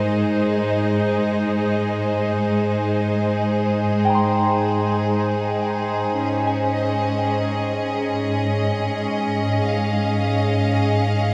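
A huge, wet reverb gives this peaceful, serene ambient excerpt the feel of a vast, echoing space, its free-time chords in Ab major moving to Dbadd9/Ab at 6.1 seconds. A clear, biting string section holds sustained chords up front, with light vibrato, over a rich cello section whose expressive portamento anchors the bass, while a resonant, overtone-sweeping drone with chorus fades out in the background. From 4.1 seconds a soft, pure, dark FM bell adds gentle arpeggios, with chorus and tape echo, set back in the mix.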